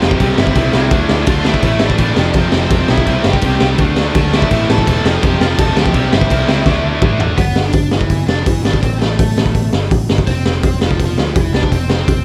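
A dry sound with little reverb frames this aggressive, urgent punk rock excerpt in a straight 4/4, cut from a longer piece. A raw garage drum kit sits up front, gritty and saturated, with a high-tuned snare, a boomy kick and a rolled-off top, driving crash, hi-hat and toms. Underneath, a vintage foam-muted electric bass plays round, dark, amped lines, while three bright picked guitars, two distorted and one overdriven, one of them a double-tracked high-gain part, play a riff in the background through the opening section. A drum fill at 6.7 seconds leads into the second section at 7.4 seconds, where the riff guitars drop out and the bass, drums and lead carry on over G, Am and F5. Throughout, a lead guitar through a small cranked amp plays an overdriven, warm melody that reaches as high as A5.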